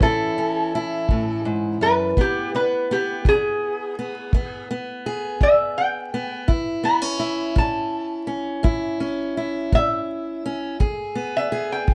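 A slow, rolling 12/8 pulse at 56 BPM drives this swaggering, rollicking slice of acoustic country blues, with a tight, smooth kick drum thudding up front beneath a fingerpicked parlour steel-string guitar whose bright, boxy accompaniment carries the odd finger squeak. Over them, a lap resonator guitar played with a steel bar takes the melody throughout, its metallic, nasal slide voice sitting forward as the chords move between A and E. Moderate studio reverb and a dark production laced with vinyl crackle give the short excerpt an aged, lived-in feel.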